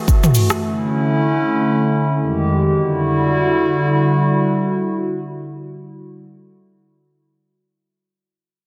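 A hollow, flute-like pad opens this short amapiano fragment, cut from a longer piece, holding sustained chords in E dorian with a slow attack and long release, its chorus and sidechain pumping colouring a dark tone that sits up front. In the first moments, ending by 0.6 seconds, a layered deep house drum kit joins it up front, with a deep kick, dark hats, rim click, shaker and toms, plus soft clipping on the snare. The music moves in free time, tuned to A4 = 435 Hz, and its opening stretch plays as a drop. The harmony drifts from F#m7 to Aadd11/D and Fm9 before settling on Em9 at 2.7 seconds as a second section begins, the pad carrying on alone until 6.2 seconds. The mood is deep and late-night, framed by light reverb and digital ambience in a dense, heavily limited modern master.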